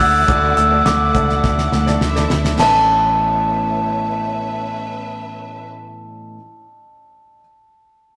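A straight 4/4 pulse from a damped 70s drum kit, with its fat snare and tight kick, drives this uplifting, warm piano-driven pop excerpt, fills from 1.4 to 2.6 seconds and drops out at 2.7 seconds, while a round, punchy, foam-muted electric bass holds the low end. A woody, slightly detuned upright piano sits in the background with a picked, full-bodied jumbo acoustic guitar riff that carries audible finger squeak. Up front, a mellow, bell-like glockenspiel struck with rubber mallets takes the melody over a distant, expressive violin section's second line and lush, dark bowed strings holding sustained chords, all in a rough rehearsal-room recording with tube saturation and a stone room reverb.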